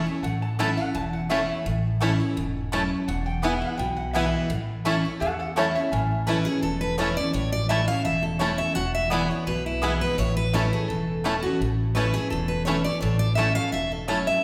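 A fast, virtuosic bluegrass piece in A major at 169 BPM opens on a picked dreadnought acoustic guitar accompaniment and a dark, thumpy pizzicato upright bass, joined by a nasal, metallic lap resonator guitar that solos under a steel bar until 5.9 s. Twangy banjo arpeggios sit in the background while a bright, double-strung mandolin adds stabs. At 6.3 s a second full-bodied, fresh-stringed acoustic guitar takes the melody up front over the A and E changes, and the reverberant church-like hall gives the rustic playing a spacious ring.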